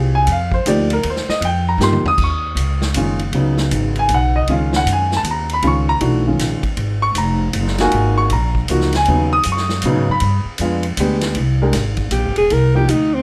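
This short cut from a longer modal jazz piece has light reverb, and its mood is intense and hypnotic. It moves at 157 BPM in a swung 3/4 in G# dorian, with a warm baby grand piano and a woody, thumpy upright bass with gut strings both up front from the start, the piano comping chords such as Fm9, Ebadd9 and a long-held G#9sus4. A vintage drum kit joins at 0.3 seconds, set back in the mix with dark cymbals, a medium-tuned snare and a tight kick, and it plays a short fill just before the harmony settles on G#9sus4. After a turn to G7b9, the music lands on Cm9, and a breathy, close-miked alto saxophone with vibrato enters at 12.1 seconds for a brief solo in its middle register that runs to the end.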